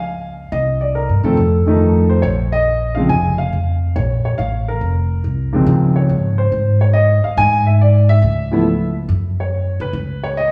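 A swung 4/4 pulse at 140 BPM drives this smoky, cool jazz piano trio passage in Bb minor, cut from a longer piece and tuned slightly low to A4 = 438 Hz. A baby grand piano carries the melody throughout, its natural tone sitting up front and ranging from Db2 to Ab5. Beside it, a pizzicato upright bass with steel strings holds the low end from F1 to Db3, sounding woody, dark and close. The harmony moves from a rootless Gbmaj7 through Cm and F7 to Bb5 in the opening part, then shifts at 5.7 seconds to Dbmaj9, E7/G#, Dbm and Gb5. Both instruments sit in a recital hall with a wet 1.6-second reverb tail that suggests a church or concert space.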